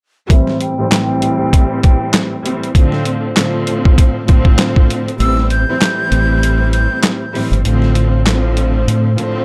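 A compressed, pitched-down sampler drum kit leads this gritty, dark boom-bap hip-hop excerpt at 98 BPM in A minor, with a thumpy kick, high-tuned snare, hi-hat and handclaps swinging over Am7 and Dm7/A, and a filter sweep running through the opening section. Close, bowed studio strings with soft sul tasto tone and light vibrato hold the low accompaniment, while a breathy, hollow jazz flute with lifted highs carries the melody through low-pass filtering and digital delay until 7.0 seconds. At 5.2 seconds the kick drops out and a round, punchy dub fingered bass enters, keeping the dark production heavy to the end.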